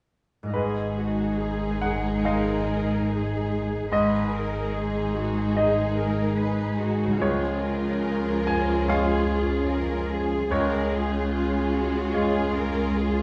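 A stone room's reverb surrounds this short cut from a longer cinematic film score, and the orchestra sounds set back in the space with a softened, dulled top end. The mood is bittersweet and full of longing, moving in a loose, rubato 4/4 as the harmony shifts from G#m to C# at 7.2 seconds. A bright baby grand piano carries the accompaniment, intimate and polished with audible action noise and short sustain. A lush violin section sings a focused second line with vibrato, while a dark, woody viola section adds close accompaniment beneath it. A smooth, distant cello section and a clear, up-front double bass section anchor the low end with bowed, even tone. In the background, a concert harp rings out fingerpicked arpeggios from 0.4 seconds until it stops at 11.1 seconds, leaving the strings and piano to carry on to the end.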